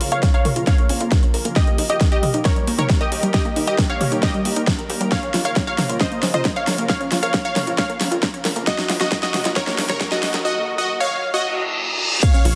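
A soaring, driving uplifting trance build-up at 135 BPM features a bright, detuned supersaw stab carrying the melody through a sweeping low-pass filter, pumping sidechain and tape echo. A lush unison pluck arpeggio and a shimmering, ethereal pad of Bbm and Eb chords sit in the background. A round analog pluck second line and a tight, mellow sequencer bass stay very quiet, while a huge-snared big-room drum kit with metallic hats rolls through a fill and a punchy electronic kick joins at 0.2 seconds up front, before a faint riser and reverse cymbal lead to an impact at 12.2 seconds in this dense, heavily limited mix.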